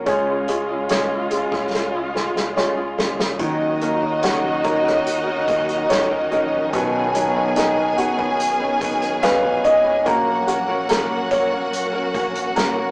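A heartbroken, melancholic pop ballad in Eb minor at 72 BPM, cut from a longer piece, where a warm grand piano accompanies over dark, bowed strings with expressive vibrato and portamento, fingerpicked nylon-string guitar arpeggios and a round, punchy fingered electric bass sitting in the background, an acoustic drum kit played with bundle sticks adds a drum fill at 1.7 seconds, a bright, lush violin section enters up front at 3.4 seconds with an intense second line, and the piano takes a fill at 8.8 seconds, all heard through a stone-room reverb with the rough, tube-saturated, small-speaker sound of a rehearsal-room recording.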